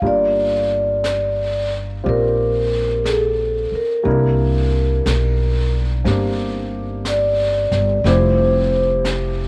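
Mellow, ringing vibraphone played with soft mallets and the motor off carries the melody from the outset of this slow, romantic, late-night swing jazz excerpt at 60 BPM, over warm, present baby grand piano chords moving from Gm7 through C9 to Fmaj7sus2, a woody pizzicato upright bass up front, and a quiet small-room brush kit with a high-tuned snare and rolled-off top, set in studio reverb, with the vibraphone stopping at 9.0 seconds and the other parts ending at 9.5.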